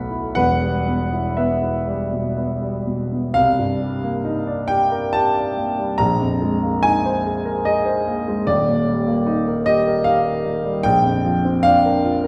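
A polished grand piano, present and up front with long sustain, carries this nocturnal, wistful fragment of impressionist classical music alone, in a flowing rubato triple metre. It opens on a hazy Emadd9 before shifting at 3.4 s into a darker passage of Cm11, Bb9sus4 and Ebmaj7 that settles on Bb69. A wet recital hall reverb, heard from further back in the room, lets the lingering chords bloom around the instrument.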